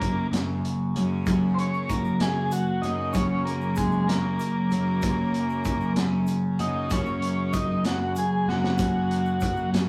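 This rough rehearsal-room recording sits in a small room with moderate ambience, giving a short fragment of a longer psychedelic rock piece a close, unpolished feel. The mood is trippy and hypnotic, rolling in a straight 6/8 over a single F# chord. A vintage, buzzy combo organ takes the melody as an up-front solo with light vibrato. Beside it, a bright, twangy twelve-string electric guitar plays a compressed, phased riff. Underneath, a punchy fuzz bass holds a low note, and a softly plucked tanpura shimmers in the background as a buzzing drone. A gritty, saturated breakbeat kit with a dark, rolled-off top drives the groove, while a grainy egg shaker joins at 1.3 s, and a drum fill arrives at 8.5 s.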